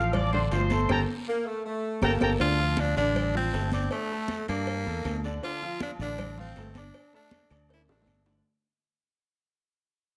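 Close, detailed microphones and a light reverb frame this fiery, driving salsa excerpt in D minor at 159 BPM, where a bright, punchy trumpet section states the melody over a brilliant, short-sustain grand piano, a round, up-front fingered electric bass, and a background bed of high-tuned congas, tight vintage cowbell and bongos, ringing, distant agogo bells and timbales, woody claves and a raspy guiro. A mellow saxophone section adds a second line at 1.3 seconds amid a band accent and drum fill. At 2.4 seconds a gritty, edgy tenor saxophone takes the solo up front with vibrato and scooped notes as the music fades out over Dm7 and Gm chords.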